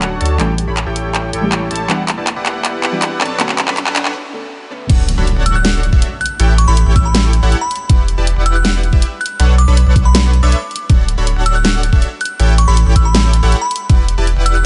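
This euphoric, lush future bass clip at 160 BPM in a half-time feel in D major opens on a build-up: a soft, round, detuned pluck accompanies a fat, nasal sawtooth polysynth riff, with filter sweeps running through both and sidechain pumping on each. Beneath them sit a thick, deep triangle sub bass up front and a dubstep kit with a huge snare, handclaps, hi-hat and crash cymbal that plays a drum fill, while an electronic riser builds quietly in the background. After a short break at 4.1 seconds, the drop lands at 4.9 seconds with a background impact and a layered, knocking electronic kick up front, as the pluck drops out. From 5.5 seconds a crystalline, warbling FM bell carries the high melody, with tremolo, chorus and digital delay. The chords move through A7, Em9, Bm9 and Dmaj7, and the mix sits in a digital ambience.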